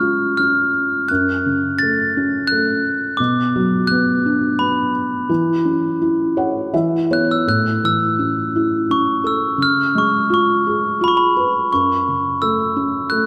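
A lush concert-hall reverb surrounds this tender, sleepy lullaby in A major, a short passage cut from a longer piece that drifts at a rubato 85 BPM in 3/4 time. Up front, a close-miked glockenspiel played with soft plastic mallets carries the bell-like, ringing melody. A felt-muted upright piano supplies dark, intimate accompaniment with short sustain and audible action noise, adding a gentle fill from 6.0 to 7.5 seconds before the harmony moves through A, C#7 and F#m to close.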